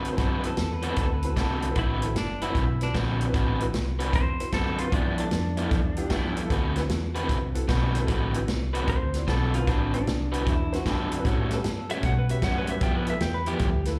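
A twangy, clean lap steel carries the melody in this gritty, swaggering electric blues shuffle at 152 BPM in D mixolydian, entering at 1.8 seconds over a crunchy, bright overdriven guitar riff and a punchy vintage drum kit with a rolled-off top. A dark, foam-muted fingered bass keeps the low end round, while a woody, slightly detuned upright piano and a lo-fi, slightly broken-up second guitar sit in the background, the latter heard only briefly, and slapback echo colours the guitars, lap steel and piano. The sound is that of a live club gig heard through the venue's PA, with small-room ambience and light reverb, as the changes move from D13 to G13, back to D13, then on to A13 and G13 in this excerpt from a longer piece.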